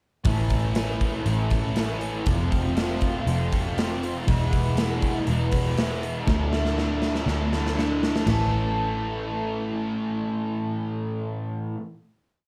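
A straight 4/4 pulse at 120 BPM drives this short, dreamy and hazy shoegaze and dream pop rock piece in A major, where a punchy, up-front gated 80s drum kit with bright cymbals and a stone-room snap rolls into a fill at 6.3 seconds before dropping out, a round, foam-muted vintage picked bass traces a dotted figure, and a double-tracked overdriven electric guitar steeped in lush chorus strums chords with whammy-bar dips through A, F, E and Dsus2 before ringing out on a final A chord at 8.3 seconds, inside a dark production and a small room.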